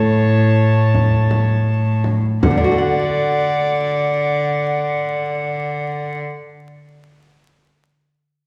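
This classical, renaissance-style consort dance in D major has a festive yet stately mood, moving at 80 BPM in a straight 4/4 and easing into a slowdown over its opening 2.4 seconds. An airy, wooden alto recorder carries the melody high above with vibrato, tongued notes and a distinct chiff, sitting somewhat back in the blend, while a warm, bowed viola adds a second line with light vibrato, a reedy gut-string tone and a smooth top. Underneath, a rich, close cello holds the bass up front in period style, and a bright, delicate lute fingerpicks the accompaniment on double gut strings, some doubled at the octave. A frame drum struck with hard hands joins between 0.9 and 2.8 seconds. The harmony moves from A to D as the first section gives way to a second at 2.4 seconds, and after the other parts stop, the lute rings on alone until 7.1 seconds in a wet, reverberant hall sound with a faint vinyl crackle, in this short cut from a longer piece.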